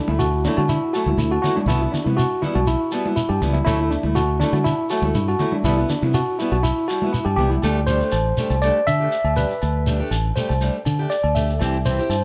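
This short cut from a longer highlife guitar-band piece has a light reverb around it, with the electric bass and tine electric piano sitting up front. The mood is danceable and warm in a straight four, with the clean electric piano spinning arpeggios through its built-in speakers and a touch of tape echo. A dark, round fingered electric bass anchors the groove, while a boxy parlour steel-string acoustic guitar fingerpicks its accompaniment, complete with audible finger squeak. In the background, bright, damped congas struck with hard hands play until 7.6 seconds, alongside ringing agogo bells and a grainy shekere that carry on to the end. The harmony sways between Dadd9 and Cmaj7, then settles on Dsus4 as the electric piano takes a solo from 7.6 seconds, closing on C.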